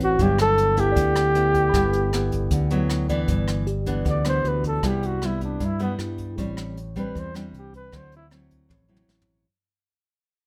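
Lightly reverberant, this romantic, breezy bossa nova excerpt in G major moves at 155 BPM: a mellow, smooth-topped flugelhorn sits up front with jazz vibrato and takes a solo from 3.3 seconds as the piece fades out, over a full-bodied, fingerpicked nylon-string guitar, also up front, a round, punchy fingered electric bass, a worn, slightly out-of-tune tine electric piano with medium tremolo that stays in the background until 6.5 seconds, and an airy, polished brushed jazz kit with a boomy kick that closes on a fill at 8.7 seconds, with chords running from Gmaj13 through Cmaj7 and Am7 to D9.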